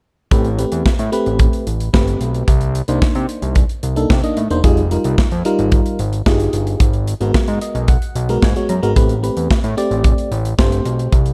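A straight 4/4 groove at 111 BPM drives this short, funky, late-night slice of early-eighties boogie funk, with a punchy kick, medium-tuned snare and hi-hat from an airy, polished acoustic kit sitting up front over a fat, detuned, saturated analog bass. A glassy FM electric piano with a bell-like attack and chorus carries the chords through Am9, Cm9, Fm9 and G#m9 before returning to Am9 at 9.0 seconds, adding a fill between 7.3 and 9.0 seconds. The production is dark and warm.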